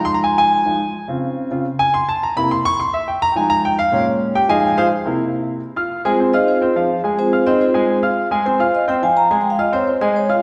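Bathed in a wet concert hall reverb with a 1.8-second tail, this brief cut from a longer jazz piece moves at a brisk 212 BPM in straight 4/4, in F minor tuned to A4 = 438 Hz, with a sultry yet fiery mood. A polished, present grand piano with long sustain plays alone at first, taking the solo over chords built around Fm7, Dbmaj7, C7 and Bbm7. The piano keeps accompanying once the mellow, ringing vibraphone, played with soft mallets and its motor off, enters up front at 6.1 s to carry the melody and take the solo through to 10.4 s.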